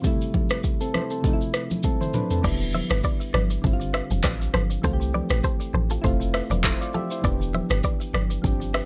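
A short, breezy and sunny afrobeats excerpt at 100 BPM in 4/4 with a lightly swung sixteenth-note feel, opening on soft, warbling electric-piano-like synth keys with chorus and plate reverb over an up-front electronic drum kit of deep kick, metallic hi-hats, handclaps, rim clicks, shaker, toms and crash, all given an overdriven edge. Congas with a thick-skinned, hard-handed sound sit in the background from the start. A drum fill from 1.8 to 2.4 seconds leads into a fuller passage where a deep, round log drum bass, dark and percussive with a fast attack and decaying tail, joins up front. At the same moment a bright, twangy clean electric guitar, recorded direct and compressed, picks out a riff with delay. The harmony cycles gently through C6, Fmaj7, Em7 and G7sus4, and the overall mix is dry.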